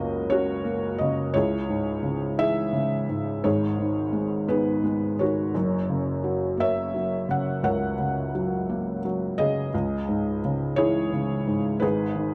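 A slow, straight 6/8 sway at 57 dotted-quarter beats per minute carries this nostalgic, hopeful acoustic folk-pop ballad, tuned to A4 = 441 Hz. A felt-muted upright piano plays alone, spanning F#1 to F#5 with a soft, mellow, intimate tone, its action noise audible and placed up front. The chords move from F# through C#m and G#m, return to F#, then reach C#madd9 before settling on G#m, all in a dry, close 1970s-style studio sound with light reverb across this 12.3-second excerpt.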